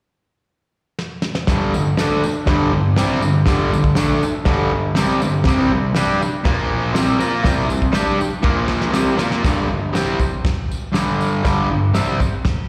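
Heard through a venue's PA with a recital-hall reverb and light small-room ambience, this live garage rock clip has a rowdy, swaggering energy in a straight 4/4. The soft brush drum kit enters at 1.0 seconds with a fill, its dark, smooth sound built on a punchy kick, a fat snare and dusky, rolled-off crash cymbals. At 1.5 seconds the fuzz guitar comes in with the riff, bright and distorted, picked and double-tracked, sitting up front with compression and a slapback echo as it moves through G5, C5 and Bb5 power chords. A jingly tambourine, compressed and saturated, plays along in the background from the same point. Another drum fill leads into a closing passage at 9.4 seconds that returns to G5 before the clip cuts off.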